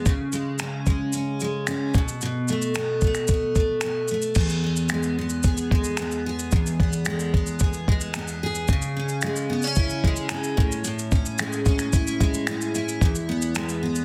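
Easy-going and heartfelt, this acoustic pop fragment moves at 111 BPM in a straight 4/4 feel in E major. A picked steel-string dreadnought acoustic guitar carries the accompaniment, double-tracked and up front, with a bright, full-bodied tone and audible finger squeak. A dusty, sampler-style soul drum kit joins at 0.1 seconds with a thumpy kick, finger snaps, shaker and crash cymbal; it is compressed and gritty, re-recorded in a large room, with soft clipping on the snare. The chords move from C#5 and Asus2/B into E at 4.4 seconds, then through C#m and Amaj7 before returning to E. A light reverb surrounds the pair, and the dense, heavily limited modern master keeps both parts close and present.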